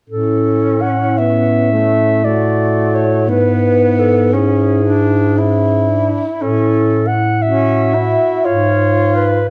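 A mellow clarinet sings the lyrical melody in this serene, slow classical passage for single-reed quartet, a rubato 3/4 in A major at 58 BPM, tuned to A4 = 436 Hz and cut from a longer piece. An alto saxophone with light vibrato, soft attack and a smooth top carries a second line in the background, while a tenor saxophone with vibrato gives distant, roomy accompaniment up front beside a bass clarinet anchoring the low end. A dark production places the quartet in a moderate scoring-stage reverb as the harmony moves from A through Dmaj7/A and E7/G#, returns to A, and arrives on C#7/G#.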